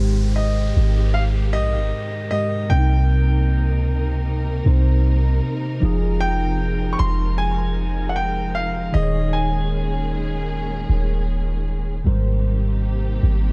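Opening on a mellow tine electric piano with analog chorus over dark, lush bowed strings, a deep, boomy 808-style bass and a brief electronic downlifter that ends at 5.8 s, this dreamy, romantic contemporary R&B excerpt in Ab major moves at a swung 77 BPM through Abmaj7, Cm7, Fm9 and Eb7sus4 to Abmaj9, while a clear, intimate baby grand piano with tape echo and audible action noise carries the melody from 0.4 s to 11.6 s in a small, dark-toned room.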